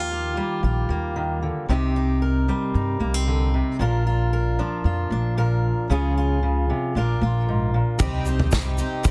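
A straight 4/4 pulse carries this hopeful, nostalgic indie folk excerpt, where a bright, fingerpicked steel-string guitar up front and woody pizzicato upright bass play together until the guitar drops out at 8.0 s and the arrangement builds: an unplugged drum kit with punchy kick and bundle sticks, a shimmering octave-doubled twelve-string, a mellow felt-muted upright piano with audible action noise, and a grainy egg shaker in the background all enter, set in light reverb within a dense, heavily limited master.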